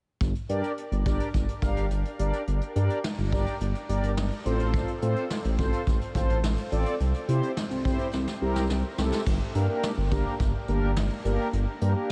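A dreamy mix soaked in a huge ambient reverb wraps this driving, melancholic synth-pop excerpt in G dorian at 106 BPM, moving through Gm, F/A and C before returning to Gm at 9.3 seconds. A smooth sawtooth-and-square synth bass with vibrato sits up front beside a vintage brush kit of punchy kick, medium-tuned snare and dark cymbals in a small-room sound, which plays a fill from 8.1 to 9.3 seconds. Mellow synth brass, brassy and round with a filter sweep and chorus, enters at 0.5 seconds to carry the accompaniment.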